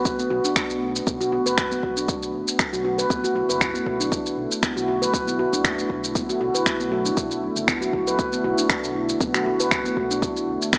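A ringing, meditative handpan plays arpeggios up front from the start, over a smooth analog pad holding a sustained B minor seventh chord in the background with chorus, both breathing with sidechain pumping, and the handpan trailing tape echo. From 0.1 s a deep electronic kick and up-front shaker and finger snaps drive a gently swung 118 BPM afro house groove, while a dark, rumbling detuned saw bass sits low beneath them. The spiritual, warm mood comes through a dry, gritty sound with transformer saturation, light reverb and a small-speaker character, in an excerpt cut from a longer piece.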